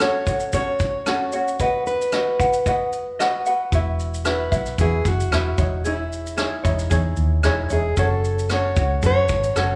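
A full-bodied, fingerpicked jumbo steel-string acoustic guitar carries the melody in this sunny, heartfelt acoustic pop excerpt, over a light, fingerpicked ukulele and a vintage brush kit with a tight kick, rim click and shaker, rolled-off on top and sitting up front. At 3.7 seconds a dark, round, foam-muted electric bass enters, punchy and amped, under a gently swung 16th-note groove as the chords move from F#m through B, Esus2 and C#madd9/E. The parts are bathed in a moderate recital hall reverb, recorded in a church or concert hall with a small room ambience.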